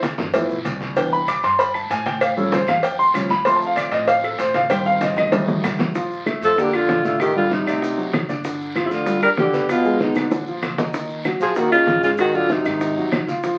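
A brisk, straight 4/4 Afro-Cuban jazz groove at 192 BPM drives this lively, sophisticated excerpt from a longer piece. It is built on ringing, low-tuned congas played with soft hands, round cowbell and bongos struck with hard hands, a raspy guiro, grainy maracas and woody claves that join from the background at 1.3 seconds. Beneath them, a pizzicato upright bass with steel strings sits in the background, while an up-front grand piano takes the solo through the opening passage with rich extended chords such as G13, Cmaj9 and Dm7. At 6.4 seconds, as the music settles into Bb major, a breathy, whispered alto saxophone steps forward with clear vibrato and a soft attack, joined by a bright trombone second line with light vibrato and scooped notes. The harmony grows more restless here, passing through Bbmaj7, D7b9, Fm7b5 and Ebm7 before arriving on Ab9. A wet studio reverb and the crackle of a very old 78 rpm record give the intimate performance an aged patina.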